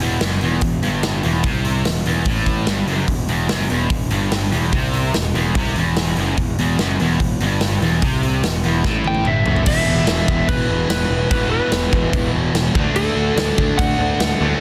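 A big acoustic rock kit sits up front in this aggressive, heavy hard rock excerpt, its punchy kick, medium-tuned snare and bright cymbals ringing in a large, natural room with crashes, hi-hat and toms. Beneath it, a dark, round fuzz bass drives the low end with overdrive, while three picked electric guitars churn out riffs in the background: a bright cranked stack, a crunchy overdriven part and a double-tracked distorted guitar that holds to the lowest register. During a drum fill that begins at 8.9 seconds, a slightly broken-up, compressed lead guitar enters at 9.1 seconds with a high melody trailed by digital delay, and the distorted riff guitar drops out at 9.7 seconds. The harmony moves from E minor to a power-chord E and then to D. The mix is dense and heavily limited, with studio reverb and a modern, loud finish.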